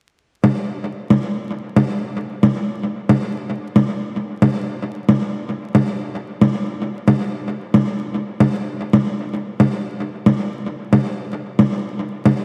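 The straight 4/4 pulse of this techno excerpt is carried entirely by bongos, which play from 0.4 seconds to the end, their electronic, layered sound pushed up front and roughened by overdrive with a dub echo trailing behind. A lush hall reverb with a long tail wraps the hits in a deep, hazy atmosphere. The bright 1980s-style digital sheen sits under a bed of vinyl crackle.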